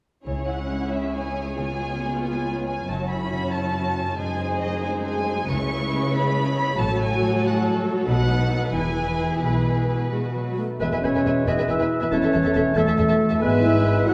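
A rubato 6/8 pulse at 92 BPM, counted in dotted quarters, carries this dramatic, stormy orchestral passage that moves from C# minor into E major at 5.5 s. Lush, vibrato-rich violin sections sing the melody and a second line over expressive viola with soft portamento, a ringing harp in arpeggios, and smooth cellos on the bass, while the double basses join in fully from 5.5 s. At 10.8 s a dark, tight French horn section adds sustained chords as a clear, distant oboe, a pure straight-toned flute, a clarinet and a present bassoon enter with second lines and accompaniment, all bathed in a wet concert hall reverb.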